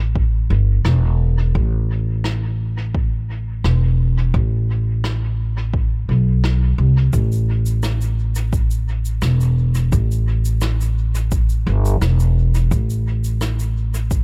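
Deep and spacious, this ambient dub fragment in straight 4/4 opens on a growly, woody upright bass, plucked pizzicato on steel strings and thickened by tube saturation, sitting up front in the low register. A deep, tape-tinged electronic kick drum, re-recorded in a large room, joins at 0.2 seconds, and a natural, small-room rim click and shaker with a brushed character follow at 0.8 seconds, trailed by dub echo. The mix is echo-heavy with little reverb, keeping the bass and kick close and present.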